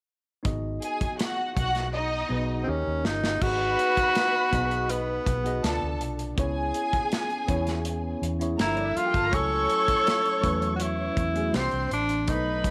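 Lush 1970s-style soul at 81 BPM, silky and smooth, with a worn, slightly out-of-tune tine electric piano under phaser, a modern acoustic drum kit with a punchy kick and pumping room sound, and a round, foam-muted electric bass all entering around 0.5 seconds over chords such as G#m7 and D#7, joined by a dark, bowed string section at 0.8 seconds. During a drum fill from 1.9 seconds, a breathy tenor saxophone takes the melody up front at 2.6 seconds, its jazz-style vibrato and scooped notes carrying through richer changes like Gm9 and C9. The mix sits in a small room with light reverb, and the passage is cut from a longer piece.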